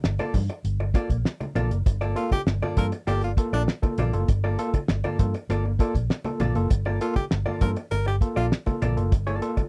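A sly, driving funk excerpt opens on a thuddy, cloth-damped drum kit with a fat snare and tight kick, a round, punchy, foam-muted fingered bass up front, and a clean, compressed hollow-body jazz guitar accompanying quietly over a Gm9 chord, while very faint, saturated congas join. A worn, slightly out-of-tune tine electric piano with light overdrive adds stabs from 1.9 seconds, and a breathy tenor saxophone with subtone, scooped notes and light vibrato plays a jazz-style second line from 2.2 to 8.5 seconds. The close, 1970s-style studio sound is dry, with little reverb.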